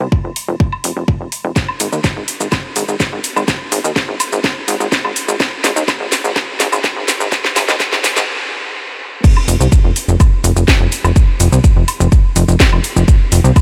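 Hypnotic and dramatic, this melodic techno passage, cut from a longer piece, rides a straight 4/4 pulse through a long build-up, with a filter sweep running over the first 9.2 seconds. A plucky analog bass sits up front, its sawtooth and pulse-wave tones given a fast attack and decaying filter pluck, tube saturation, and a sidechain pumping that makes it feel funky and punchy. Alongside it, a layered electronic kick drum punches up front with a tape-warm weight and a touch of small-room ambience. A house drum kit adds cracking snare, metallic hats, shaker, woodblock and crash cymbal, rolling through a drum fill from 1.6 to 8.3 seconds before a brief stop. The drop lands at 9.2 seconds, and the whole dreamy mix is soaked in a huge ambient reverb that stretches every hit into a lingering haze.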